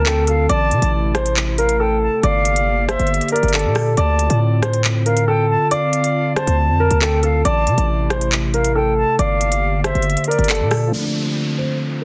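Cold and dark, this drill hip hop excerpt moves at 138 BPM in a half-time feel in D minor, with a mellow, long-sustaining baby grand piano carrying the melody up front through tape echo and a low-pass filter, while an airy, distant concert flute with vibrato plays a second line above it and a warbling, nostalgic lo-fi pad holds sustained chords through chorus and its own reverb. Beneath them, a punchy, heavy 808-style bass with a noise layer and a crisp electronic drum kit of handclaps, hi-hat and rim click sit up front in a dense, heavily limited mix with light small-room ambience. The drums drop out at 10.8 seconds, and at 10.9 seconds the bass and flute stop as a soft, felt-muted upright piano and an electronic downlifter enter over a Dm7 chord.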